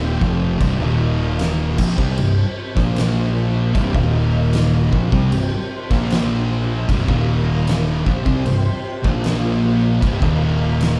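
This is a sludgy, brooding stoner and doom metal passage in a straight 4/4, cut from a longer piece and played by a band together in one large studio room with a moderate reverb. Two thick fuzz guitars carry the riff across the low register, one dark and picked, the other sitting in the background, both heavily distorted. Beneath them a growling fingered electric bass adds overdrive and tube saturation, warm and amped. An oversized low-tuned drum kit comes in at 0.2 seconds with a punchy kick, fat snare and dark crash cymbal, placed up front in a bright stone room that pumps and grits the whole kit. Behind the band a vintage string machine with a violin voice holds shimmering sawtooth chords with a soft attack and ensemble chorus, keeping a faint glow above the riff as it cycles through power chords from C minor.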